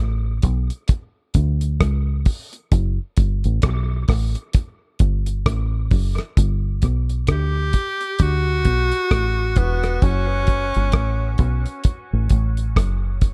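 Dub reggae with a meditative, spacious mood, cut from a longer piece, opens on a deep, round fingered electric bass, joined at 0.4 seconds by a damped 70s drum kit of tight kick, hi-hat and rim click, with a rolled-off top, both sitting up front in a dark, warm small-room production. At 7.3 seconds an edgy, forceful tenor saxophone enters with vibrato and a dub echo, playing a punchy solo until 11.9 seconds over chords moving from G through D to F#m.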